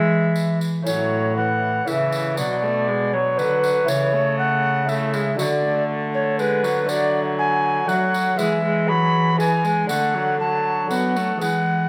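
Set in a 3/4 at 119 BPM with a straight feel, this courtly, stately Renaissance-style consort dance is a short section cut from a longer piece. A tenor recorder carries the melody, close-miked and up front, with an airy, wooden, straight tone and a tongued chiff on its notes. Beneath it, a bowed cello on gut strings holds the bass with a nasal, period-style voice that also sits forward. A single viola plays a rich, distant accompaniment with light vibrato, while a fingerpicked lute on double gut strings adds delicate, mellow support from the background. A jingly tambourine joins at 0.4 s, placed far back in a large room, as the harmony moves from E through A, B minor and D before returning to E. The whole consort sits in a moderate recital-hall reverb that gives the dance a graceful, spacious bloom.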